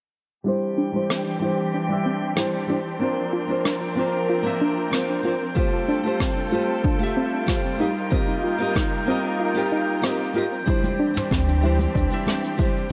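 Bathed in a lush hall reverb, this relaxed, wistful sunset chillout excerpt in D minor at 94 BPM sets a bright, fingerpicked nylon-string guitar up front over veiled con sordino strings, a round, detuned synth pluck in arpeggios and a glassy texture of drifting overtones, with filter sweeps on the guitar, strings and pluck, a brushed kit of cabasa, rim click and toms, a punchy overdriven electronic kick that enters at 5.6 seconds and drops out from 9.4 to 10.7 seconds, hard-handed congas in the background and a deep sine sub bass arriving at 11.3 seconds beneath chords moving from D9sus4 through C9sus4, G9sus4 and F9sus4 back to D9sus4.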